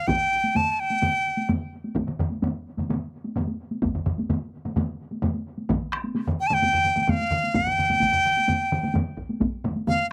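A bright, airy bamboo dizi with a buzzing membrane sits up front, its straight, soft-edged tone carrying a slapback echo as it sounds briefly at the start and returns from 6.4 seconds, moving between F5 and A5. Beneath it, four taiko ensembles struck with heavy and hard sticks drive a ceremonial, powerful Japanese traditional groove at 129 BPM in a straight 4/4, some close and dry, one in a small room and one with a vintage, band-limited character. The piece is tuned to A4 = 436 Hz, has a light reverb and an outdoor feel, and is cut from a longer performance.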